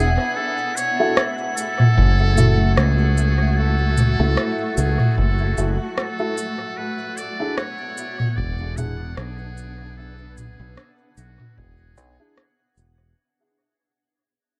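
Ambient dub at 75 BPM with a lightly swung 4/4 feel, hazy and deep, where a buzzy, vibrato-laden trumpet with metal mute carries the melody through dub echo over a cloudy, detuned granular pad and a drifting, glassy texture of chorused overtones, while an up-front fingered electric bass anchors the low end, an organic electronic drum kit of rim click, shaker and toms with dub echo enters at 0.8 seconds, mellow, woody upright piano stabs echo from 1.0 seconds, and an overdriven electronic kick joins at 2.0 seconds, all in a dark, close production that moves from F#m7 to E7 at 6.8 seconds as the cut fades out.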